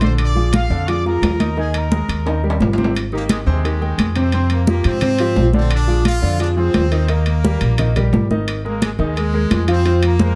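Festive and sunny, this brief salsa passage moves at 174 BPM in 4/4 in Ab major, with a brilliant, punchy trumpet section carrying the melody with light vibrato over a clear, polished concert grand piano that sits up front with short sustain and deep bass. Woody, growly pizzicato upright bass, also up front, anchors the low end, while damped, high-tuned congas played with soft hands and ringing, saturated metal-shell timbales fill out the percussion. A drum fill at 2.3 seconds leads into a repeat of the opening section, heard in a moderate studio reverb.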